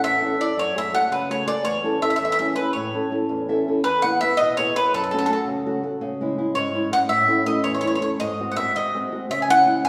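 A resonant church or concert hall surrounds this romantic, lively Italian serenade, its reverb lending both instruments a lingering glow. Set in 6/8 with a straight feel, it is cut from a longer piece. Up front, a bowl-back mandolin carries the melody throughout, its picked double strings giving a warm voice in a middle-to-upper register. Beside it, a fingerpicked nylon-string guitar supplies accompaniment with a dark, small tone, reaching from deep bass notes into the treble, and slips in a brief fill between 3.3 and 3.8 s. At 3.8 s the music moves into a new section as the harmony shifts, passing through F#m, C#m, A and G#7 before settling on C#m near the close.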